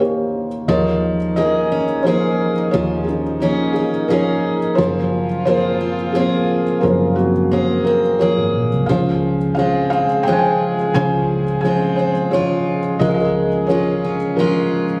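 In a straight three-beat lilt, this intimate, hopeful acoustic folk-pop ballad excerpt opens with a soft, felt-muted upright piano carrying the melody up front with audible action noise, while a warm French horn with light vibrato and a smooth top sings a second line; from 0.7 s a jumbo steel-string acoustic guitar adds full-bodied picked arpeggios with finger squeak and a dark, foam-muted electric bass sits round beneath, the mix bathed in concert-hall reverb and caught as a compressed phone recording of the room with a club-like ambience.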